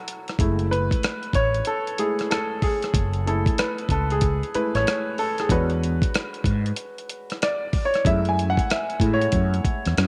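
Sultry and soulful, this short neo-soul and R&B excerpt from a longer piece moves in a swung 4/4 groove over F#m9 and E13 chords. A clear concert grand piano with a deep low end opens at 0.0 seconds and carries a solo from 0.4 seconds onward, while a gritty, compressed sampler-style drum kit adds hi-hat, rim click and a thumpy kick. A dark, round fretless electric bass with ensemble chorus enters at 0.4 seconds, and the up-front parts sit in a moderate spring reverb.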